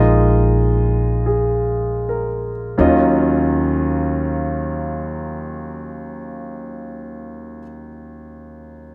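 Jazz ballad, smoky and melancholic, cut from a longer piece with a swung feel that slows down over the opening 2.8 seconds on a suspended dominant chord before settling onto a minor ninth. A warm concert grand piano sits up front with a deep, natural low register alongside a woody pizzicato upright bass on steel strings. The bass stops at 7.6 seconds, and the piano carries on alone until 8.9 seconds. Light reverb gives the pair a gentle sense of space.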